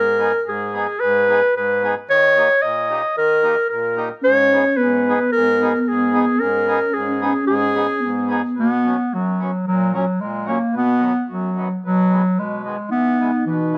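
A straight 2/4 pulse at 111 BPM drives this bouncy, jolly alpine dance-band folk tune, cut from a longer piece, set in G# harmonic minor before brightening into B major at 8.6 s. An up-front, warm clarinet carries the melody in a smooth, classical style with a touch of delay, while a reedy, hollow, vintage-sounding accordion supplies the accompaniment underneath. From 4.2 s to 8.6 s, and again from 12.9 s, a pure, breathy sine-like lead adds a soft, sustained, dark second line with vibrato, chorus and phaser, all in a small room of moderate reverb.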